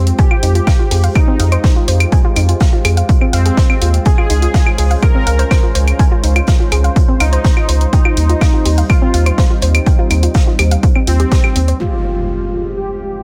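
Hypnotic and cinematic, this melodic techno passage in F minor moves at 124 BPM in a straight 4/4, cut from a longer piece and cycling through Fmadd9, Dbmaj7 and Cm/Eb before returning to Fmadd9. A punchy, tape-warm electronic kick sits up front beside a deep, round analog bass, while tape-colored electronic hi-hat and claves and a faint, airy street-band kit of hi-hat and snare, high-pass filtered and set in a big room, fill out the drums. Above them a dark, detuned analog pad holds moody sustained chords with chorus, and a soft, warbling pluck spins vintage arpeggios through chorus and tape echo. A smooth, evolving supersaw carries the melody under a low-pass filter and tape echo, with sidechain pumping breathing through the pitched parts. At 11.8 seconds an up-front electronic impact lands as the supersaw takes a filter sweep and fat, wave-folded synth brass stabs enter in the background, carrying the passage to its end at 13.2 seconds inside a digital ambience.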